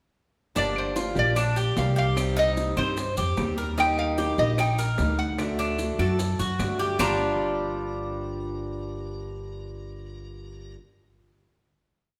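Danceable and nostalgic, this short Cuban son and guajira piece moves in a straight four over a minor progression before settling on a held final chord. A metallic, nasal resonator slide guitar, played with fingerpicks, carries a motif-based melody built from call phrases, while the up-front tres spins an arpeggiated guajeo on its doubled, partly octave-strung courses. A bright archtop guitar strums with muted slaps underneath, and the dark, thumpy pizzicato upright bass plays a tumbao that anticipates the chords. Very quiet, round, low-tuned bongos keep steady eighths beside grainy maracas and woody, vintage-sounding claves tapping a two-bar time line in the background. The three percussion parts drop out at 7.1 s, leaving the strings to ring into the final chord until about 10.8 s, all bathed in the reverberant glow of a church or concert hall.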